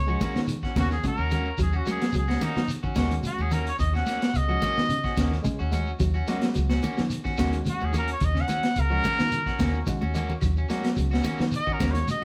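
A straight 4/4 afrobeat groove at 109 BPM in Eb minor, cut from a longer piece, sets an intense, hypnotic mood as a crunchy, saturated breakbeat kit with a punchy kick and high-tuned snare plays alongside a round, foam-muted fingered bass, bright hard-hand congas and grainy shekere, while a clean picked guitar arpeggiates, a twangy guitar at the edge of break-up adds stabs and a barky, overdriven reed electric piano pulses with fast tremolo beneath an up-front, clear trumpet soloing with light vibrato over an Ebm7, with a drum fill at 9.9 seconds and very quiet woody claves slipping in at 10.4 seconds, all played live in a moderate stone room.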